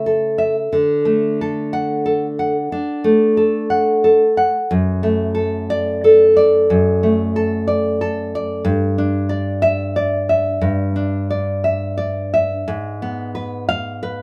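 Light reverb surrounds a full-bodied, up-front nylon-string guitar whose deep classical tone carries finger squeaks, heard in this short fragment cut from a longer piece. The solo guitar is fingerpicked in a romantic style with a freely flowing rubato feel, moving from D through D/F# and Em7/G to a G#m6 at 12.7 seconds. The mood is sunny and nostalgic.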